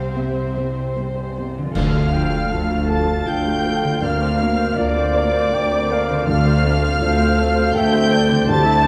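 Bittersweet and longing, this rubato cinematic film-score fragment in 3/4 opens with veiled, con sordino violins carrying the melody over a mellow clarinet, a second muted violin line, a felt-muted upright piano with audible action noise, muted violas, ringing fingerpicked harp and dark muted cellos and double basses, before a dark French horn section and soft-mallet timpani enter at 1.7 seconds, a hollow, distant flute joins at 1.8 seconds, and dark clash cymbals with concert bass drum mark a brief accent, all set in a wet scoring-stage reverb.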